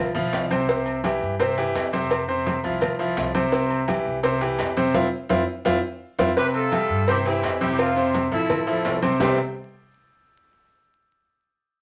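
Salsa at a festive, danceable 169 BPM in C major, where a bright, up-front concert grand piano drives the accompaniment over woody pizzicato upright bass and a background bed of congas, cowbell and bongos, ringing timbales and agogo bells, and grainy maracas, with a drum fill and band accent from 4.9 to 6.4 seconds before a mellow, distant horn section takes the melody at 6.4 seconds, all in a short cut from a longer piece carrying reverb and vinyl crackle.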